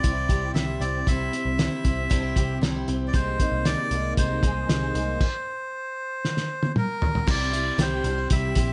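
A reedy, breathy melodica carries the melody through plate reverb in this breezy, nostalgic slice of jangly indie pop, over bright picked steel-string acoustic guitar, clean, compressed electric guitar arpeggios with ensemble chorus, a dark, round muted electric bass and a muffled, gritty cloth-damped drum kit that plays a fill at 6.2 seconds within a stop from 5.2 to 7.3 seconds, as the harmony moves from C to Abadd9/C and back to C.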